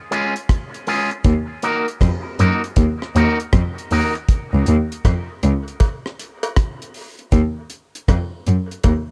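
Laid-back and spacious, this dub reggae excerpt at 79 BPM in Db major rides a swung sixteenth feel, opening on a bright, twangy envelope-filtered electric guitar with dub echo and a dry, dark reggae drum kit of hi-hat, tight kick and rim click; a clear, focused bowed cello with vibrato enters on the bass line at 1.2 seconds, the guitar drops out at 4.2 seconds, and a faint cowbell with dub echo arrives at 5.0 seconds in a small room ambience.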